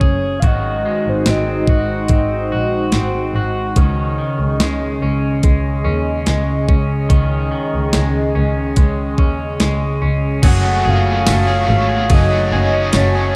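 A clean, thumpy 12-bit drum machine sits up front in this ethereal, floating dream pop excerpt, its kick, snare, hi-hat, ride, crash and tambourine carrying a tape-tinged sampler character over a veiled, bowed, muted double bass. A mellow, detuned sawtooth analog pad holds sustained chords under lush chorus and shimmer reverb, while a twangy, slightly broken-up electric guitar picks arpeggios through delay, and a round, octave-layered synth lead with vibrato sings its melody at the start and returns at 10.5 seconds. At 10.4 seconds a bright, double-tracked overdriven guitar joins with tremolo, and the dark production places the parts in a moderate hall reverb.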